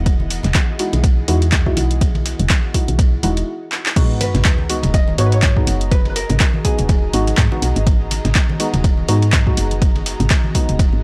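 Airy, breathy pad chords, deep mellow stabs with an analog delay and a woody, round FM bass open this moody, smooth deep house excerpt at 123 BPM in G# minor, pumping together over an Emaj9 chord. An up-front, overdriven electronic kick, a punchy analog drum machine with hi-hat, handclaps and crash, and a gritty sampler-style kit with ride and snare set up a swung 4/4 groove, while thick-skinned, damped congas sit in the background. After a brief stop and a drum fill, the drop lands at 4.0 seconds on G#m7 with a very quiet sub drop. A dark, clean hollow-body jazz guitar then plays a picked melody through tape echo until 7.6 seconds. The mix is dry and gritty, with the hardware character of a cassette tape recording.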